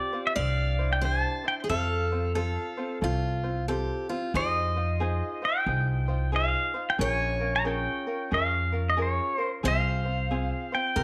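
The pedal steel guitar carries the melody up front in this relaxed, sunny Hawaiian excerpt, its bright, clean electric tone played with fingerpicks and slide, shaped by volume swells, compression and a slapback echo. Beneath it, a picked steel-string acoustic guitar with a jumbo, full-bodied sound plays a second line, with a touch of finger squeak, while a light, warm, fingerpicked ukulele supplies the accompaniment. An upright bass with gut strings enters at 0.4 seconds, pizzicato, woody and thumpy, sitting up front beside the steel. The tune swings easily at 90 BPM in 4/4, opening in F major before turning to F minor at 4.3 seconds, where the chords move through Fm7 and Bbm7 to Fm/C. Light reverb and a small room ambience give the group an intimate, close feel.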